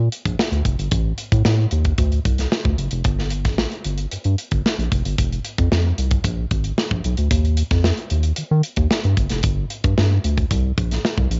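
This short cut from a longer piece has a dry, close sound with little reverb, and a dull top end, as if taped at home on cassette, with everything above 7.7 kHz missing. The style is polished 1980s jazz-funk pop in a straight 4/4 at 113 BPM, with a breezy, upbeat mood and tuning that sits slightly flat at A4 = 437 Hz. A round analog synth bass opens at 0.0 seconds and carries the low end from F1 to Eb3, its deep, dark tone built from blended square, sine, triangle and sawtooth waves with a wave-folded edge, a fast attack and sustained notes. The drum kit joins at 0.1 seconds with hi-hat, a punchy kick and a medium-tuned snare, recorded acoustically in a studio room with a mid-forward character. Both parts sit up front in the mix and play together through to the end at 11.4 seconds.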